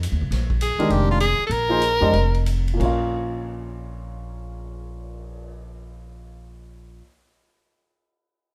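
A woody pizzicato upright bass and a punchy, natural big-room swinging drum kit open this intense, spiritual modal jazz fragment in Bb minor at 175-206 BPM with a 62% eighth-note swing and a slowdown early on, as an edgy, forceful tenor saxophone solo with vibrato and scooped notes enters at 0.6 s and stops at 2.5 s, a polished baby grand piano comps from 0.8 s, and the harmony moves from Bb7sus4 to Bbm under light reverb.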